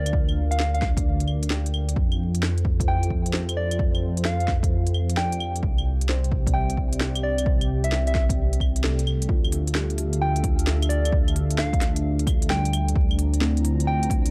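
A dry, gritty hardware recording laced with vinyl crackle and digital ambience frames this wistful, nocturnal future garage excerpt at 131 BPM, with swung sixteenths in D minor: a round, warbling FM synth lead with chorus, tape echo and cassette-tape coloring carries the melody over background muted felt-like synth keys and a moody, full-bodied analog pad, both pumping with the sidechain, while a deep, rumbling detuned saw bass with tube saturation sits up front beside a punchy, layered electronic kick and an organic electronic kit of woody snare, crisp hi-hats and claves, the band hitting an accent at 8.8 seconds before the harmony turns to Dmadd9 at 9.3 seconds.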